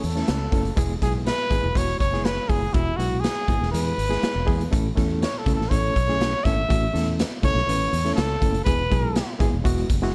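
A straight 4/4 beat at 122 BPM from a gritty, saturated garage drum kit with a punchy kick and a pumping stone-room sound drives this joyful, danceable cut from an uptempo 1960s-style soul piece in A major, where a round, dark fingered electric bass and a reedy, lightly overdriven electric piano with fast tremolo move between A and E chords beneath an up-front jazz-style trumpet solo, played with vibrato and slapback echo, that rings until 9.4 seconds in a small room.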